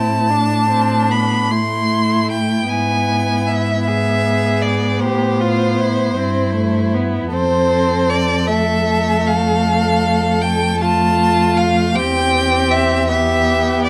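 A string quartet begins together in a yearning, elegiac classical slow movement in 12/8 with free rubato: the clear, up-front first violin carries the melody with smooth, even vibrato above a rich, expressive second violin line with portamento, while the viola's accompaniment and the up-front cello's bass, both warm and close with soft attacks, vibrato and sliding portamento, sit in a moderate recital-hall reverb caught by close, detailed microphones in this brief passage cut from a longer piece.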